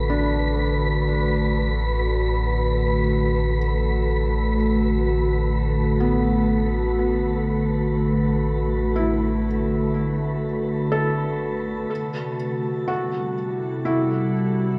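In this slow, melancholic and serene ambient excerpt at 61 BPM in 4/4, a glassy FM pad holds ethereal, chorused chords over a deep, round analog bass, while a felt-muted upright piano traces soft, intimate arpeggios with audible action noise, tape echo and shimmer reverb, and an airy, wind-like tuned noise texture breathes high above. The harmony rests on D6/A before moving to Am7 at 11.9 seconds, where the bass and noise texture fall away, leaving pad and piano to carry the final bars until 14.8 seconds. The dark production, tuned to A4 = 438 Hz, sits in a wet concert hall reverb.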